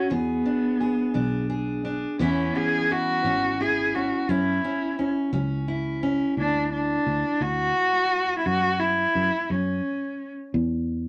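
A moderate studio reverb frames this uplifting indie folk fragment in 6/8 with a building arrangement, where a single up-front bowed cello carries the melody with a dark, woody vibrato over a full-bodied fingerpicked dreadnought guitar whose fresh strings catch audible finger squeaks until 8.5 seconds, while a round, foam-muted fingered electric bass holds the low end and the cello drops out at 10.3 seconds.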